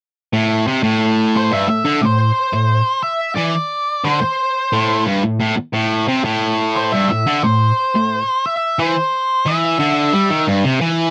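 An octave-fuzz lead guitar, dark and up front with wah and distortion, carries a melody from 1.4 seconds in this swaggering, brooding rock piece at 89 BPM in A minor. Beneath it, a bright, double-tracked electric guitar with overdrive drives a low riff over a steady A minor chord from 0.3 to 11.1 seconds. The dry, close sound recalls a 1970s studio, with only light reverb.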